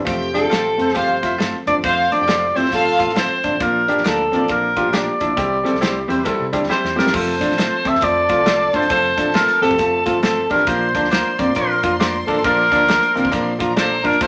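A short, wet studio reverb surrounds the band, and the alto saxophone carries the melody up front with a distant, roomy tone and vibrato. This is a joyful, uptempo 1960s-style soul piece at 136 BPM in 4/4, with swung eighths, and it moves between F and Bb. The saxophone plays a solo through the opening while a mellow, jazz-style saxophone section adds a very quiet second line, and lush, woody bowed strings with vibrato drop out before returning at 7.1 seconds. A clear, polished grand piano with audible action noise and tube saturation provides the accompaniment, alongside a dark, fingered clean electric guitar riff and bright, twangy picked guitar stabs recorded direct. A round, punchy hollow-body bass sits in the background, and an acoustic small-room drum kit with a tight kick plays a fill alongside a piano fill just before 7.1 seconds, with the band hitting an accent from 12.4 seconds.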